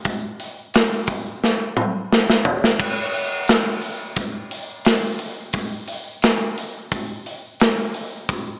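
This short clip has a small-speaker sound with a light touch of reverb, cut from a longer rock piece. A big acoustic rock drum kit, recorded in a studio room and placed up front, carries the whole track at a steady 87 BPM in a straight 4/4. The kit has bright cymbals, a medium-tuned snare and a punchy kick, with hi-hat, toms and crash cymbal filling out the sound. A drum fill runs from 1.4 to 2.8 seconds and leads into a new section that carries on to the close at about 8.5 seconds. The mood is smoky and heavy, with the drums giving the groove a weighty, grounded feel.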